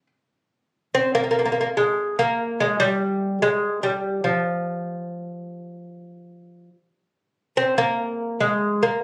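Soulful and melancholic, this short passage of Persian music is cut from a longer piece and rests on a single lute playing solo from 0.0 to 9.0 seconds. The fingerpicked nylon strings sound bright yet delicate, and the double courses, some of them octave-doubled, lend each note a shimmering, paired quality. The line stays within a compact range from F3 to C4, moving in a steady, straight 4/4 feel, with the main section beginning at 0.9 seconds. The lute sits up front, surrounded by a moderate club-like reverb. The room sound and compression reveal that it was captured on a phone, which gives the performance an intimate, close-at-hand character.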